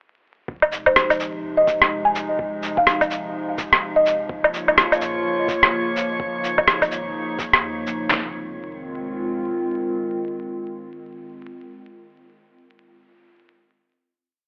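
Nocturnal and melancholic, this short future garage piece at 126 BPM in F minor sets a muffled, pitched-down sampler drum kit with a thumpy two-step kick and fat snare alongside an up-front skittering shuffle of woodblock, shaker and rim, under a warbling, detuned tape-like pad that pumps against a deep, round sub bass of long gliding notes. A woody soft-mallet marimba offers short phrases through tape echo until 4.3 seconds, a glassy held high note drifts in at 4.6 seconds, and vinyl crackle, a telephone-filtered tone and a huge ambient reverb carry the pad and sub bass into a final chord from 8.1 seconds.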